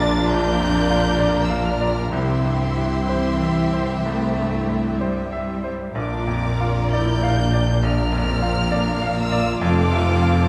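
Rubato and unhurried, this cinematic passage drifts around 60-68 BPM in 4/4, a moving and hopeful fragment cut from a longer piece in Bb lydian. High above, a distant violin section carries the melody with expressive vibrato, while a second, closer violin section sings a smooth, even line beneath it. A bright grand piano with brilliant, polished, short-sustained tone fills out the accompaniment alongside a lush viola section, as a very quiet concert harp rings with fingerpicked arpeggios. The low end rests on a clear cello section set in the background and a focused double bass section placed up front, every string section bowed with vibrato throughout all 10.5 seconds. The harmony moves from Bb to C, back to Bb at 6.0 seconds and on to F at 9.6 seconds, all bathed in a moderate scoring stage reverb.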